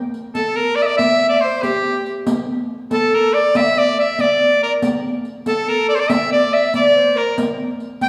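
An edgy shawm leads this short cut from a longer medieval dance, sounding up front and present in a folk style, its vibrato-laden line ranging from G4 to G5 with a soft attack. The mood is ancient and driving, moving at 94 BPM in dotted quarters within a straight 6/8 metre. A riq opens the recording at 0.1 seconds, its dark jingles sitting close and acoustic beneath the melody, while the shawm enters at 0.3 seconds. An alto recorder follows at 0.4 seconds with a second line in the same range, its woody, airy tone marked by a crisp attack, chiff and vibrato, placed at a distance behind the lead. The trio sounds as if captured in a church or concert hall, wrapped in a wet recital-hall reverb with a 1.7-second decay and a touch of small-room ambience. The music repeats its opening section from 2.3 seconds and runs through to the end at 8.1 seconds.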